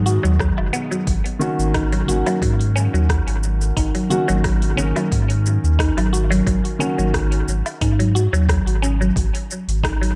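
A lightly reverberant, echo-heavy mix frames this mystical, warm slice of organic downtempo at 89 BPM in 4/4, with a gentle 16th-note swing and chords moving from G#m7 to D#m7/G#. A woody, round FM synth pluck plays bright, up-front arpeggios through phaser, subtle chorus, cassette tape character and dub echo, while a felt-muted upright piano with audible action noise gives soft, intimate accompaniment, with sidechain pumping and dub echo, until 7.4 s. Underneath, a deep, sustained sine sub bass sits forward, and an overdriven deep house kit of metallic hats, rim click, shaker and woodblock runs with dub echo alongside a punchy electronic kick that enters at 0.4 s.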